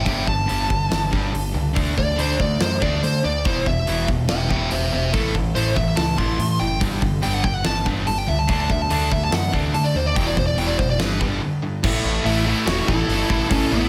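A smooth, overdriven lead guitar carries the melody in this powerful, swaggering hard rock excerpt at 143 BPM in a straight 4/4, its picked solo sitting up front with a touch of tape echo and ranging from A3 to C6 through the first 11.8 seconds. Beneath it, two picked rhythm guitars, one overdriven and one sludgy and distorted, play riffs from the background while a growling, overdriven electric bass anchors the low end. A huge arena drum kit with a fat snare, punchy kick, hi-hat and crash cymbal plays from 0.1 seconds, recorded in a big room and placed up front. The chords move through Gsus2, D5, E5, A5 and G5 before a short break at 11.4 seconds leads into a new section on A5. At 12.2 seconds a dark octave-fuzz lead guitar enters in the background with a second line, and the whole sits in light reverb and studio ambience.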